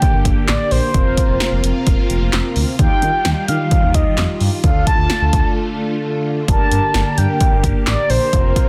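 The punchy analog drum machine anchors this nocturnal, driving synth-pop excerpt, its kick and snare sitting up front with a tape-warm edge, and handclaps and hi-hat caught in a short room. At 130 BPM in a straight 4/4 feel and G minor, the chords move from Gm through Fsus4, Ebadd9 and Dm before returning to Gm at 6.5 seconds, just after a brief break from 5.6 seconds. A mellow, horn-like synth lead carries the melody with a round, vintage tone, vibrato, a filter sweep, chorus and tape echo. Beneath it, a brassy synth part with detuned sawtooth voices and a soft attack holds the accompaniment, while a swirling string machine sustains bright chords through ensemble chorus and phaser. A smooth, dark sawtooth-and-triangle bass glides between notes with portamento and vibrato from 0.1 to 8.5 seconds, all set in light reverb under a dense, heavily limited modern master.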